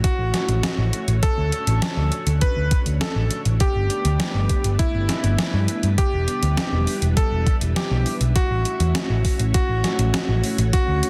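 A moody, cinematic synthwave fragment opens with a bright, clangy electric grand piano carrying the melody through tape echo over lush, sidechain-pumped sawtooth string-machine chords with ensemble chorus, a thumpy overdriven kick and a gated 80s drum machine with hi-hat and a gated-reverb snare, before a round, punchy hollow-body picked bass joins at 0.2 s as the harmony moves from A6 through Dmaj7, Gadd9 and Em7 back to A6 in a dense, heavily limited master.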